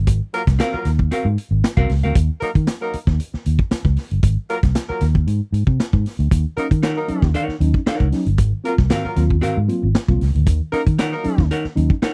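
A round, foam-muted electric bass opens this driving, sly funk excerpt in Eb dorian at 116 BPM, joined at once by a tight-kicked vintage drum kit with a rolled-off top and a mellow horn section with light vibrato and octave doubling, while a dark, clean-picked hollow-body jazz guitar comps briefly until 2.1 seconds, a tine electric piano heard through its built-in speakers adds stabs from 6.3 seconds, and the guitar returns at 6.8 seconds over Ab13 and Ebm7 chords in a dry, close 1970s-style studio sound.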